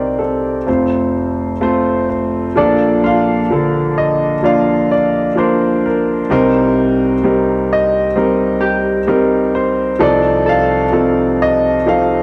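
A slow, straight 4/4 pulse carries this hopeful, intimate acoustic folk-pop ballad, cut from a longer piece. An up-front grand piano leads the melody with a boxy, warm tone, long sustain and audible action noise, moving through Cmadd9 and F before settling into Bbmaj7, Cm7 and F7/C. At 3.0 s a fingerpicked Celtic harp joins in the background with ringing arpeggios, and the room adds a moderate large-studio reverb.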